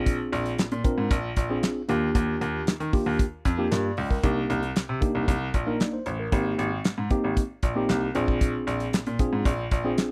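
A tine electric piano and a clear grand piano holding down the bass line open this short, danceable excerpt of early-eighties boogie funk at 115 BPM, joined at 0.1 seconds by a damped 70s drum kit with handclaps, hi-hat, tight kick and a medium-tuned snare. The electric piano sounds worn and slightly out of tune as it moves through Bb7, Ebmaj7, Cm7 and Abmaj7, while the grand piano is intimate and up front, with its action noise audible. The late-night feel is helped by a dry, close 1970s-style studio sound with little reverb and a drum kit whose top end is rolled off.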